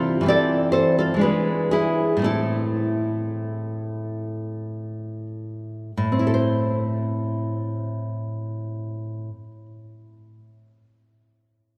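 A solo nylon-string guitar, fingerpicked and full-bodied with a deep classical tone, sits up front in this wistful, intimate romantic excerpt in A minor and 3/4, moving with rubato between 43 and 71 BPM as it slows over its first 6.0 seconds through Am/E, E7 and Am, all bathed in a wet church reverb.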